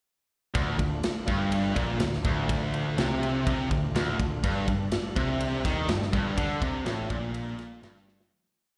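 A bright, high-gain distorted guitar leads this menacing, aggressive hard rock piece in D minor at 123 BPM with an up-front single-note riff and slapback echo, joined by a second overdriven guitar riffing in the same low range, a round, punchy hollow-body bass driving eighth notes that doubles the guitar riff, a polished metal drum kit with a tight kick, medium-tuned snare and bright ride, and a very quiet, gritty tonewheel organ holding sustained chords through a slow rotary speaker, all heard as a live gig through the venue's PA in a moderate club reverb before a fade-out from 6.4 seconds and a closing drum fill at 8.1 seconds.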